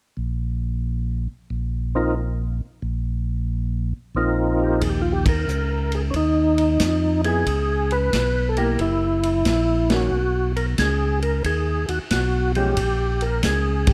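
A percussive tonewheel organ carries the melody from 2.0 seconds, its lightly overdriven, full tone ringing with second-harmonic percussion, chorus vibrato and a slow rotary speaker, sitting up front in this swinging, greasy soul jazz organ trio excerpt. Underneath, a clean tonewheel organ holds the bass from the start, with audible key click and its own slow rotary swirl. A vintage drum kit enters at 4.8 seconds with a punchy kick, medium-tuned snare, hi-hat and ride, sounding natural and rolled-off in a small room. A dark, picked hollow-body electric guitar adds clean accompaniment from 7.2 to 12.8 seconds. The band hits short accents together, and light reverb sits over the whole excerpt, which is cut from a longer piece.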